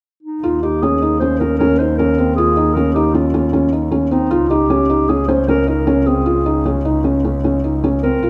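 A felt-muted upright piano sits up front with soft, intimate arpeggios between C4 and F4, its thick felt giving the notes a mellow, muffled glow. This short excerpt of contemporary chamber music moves at 154 BPM in an uneven 5/4 with a straight feel, set in Db lydian and carrying a shimmering yet restless mood. A dark clarinet in classical style opens the melody at 0.2 s, a solo voice ranging from Eb4 to C5 that sounds roomy and slightly distant. From 0.4 s a single bowed double bass holds the low end between Cb2 and Eb2, rich and smooth with vibrato and an even, close presence. The harmony rests on Eb7(no3) before shifting to Dbsus2 at 4.3 s, and a moderate concert hall reverb with a 2.0 s decay surrounds the trio.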